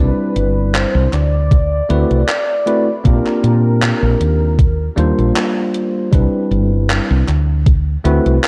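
A velvety synth lead, a bell-like tine electric piano and a woody fretless bass open this short, nostalgic vaporwave fragment together, drifting over lush Cmaj9, D13 and Ebmaj9 chords with a faded, cassette-tape haze. The sustained lead, built from sawtooth and triangle tones in unison with vibrato, chorus and tape echo, carries a brief melody in a narrow upper range before dropping out at 5.3 seconds. Beneath it, the bright, clean electric piano sits up front with subtle chorus and its own tape echo, while the dark, round bass anchors the low end. A gated 80s digital drum machine slips in at 0.4 seconds with overdriven handclaps and hi-hat treated with gated reverb, and a thumpy, sampler-style electronic kick, re-recorded in a small room, lands up front at 1.5 seconds. The gently swung groove and light reverb give the whole passage a dreamy, worn feel, as though it were lifted from a longer piece.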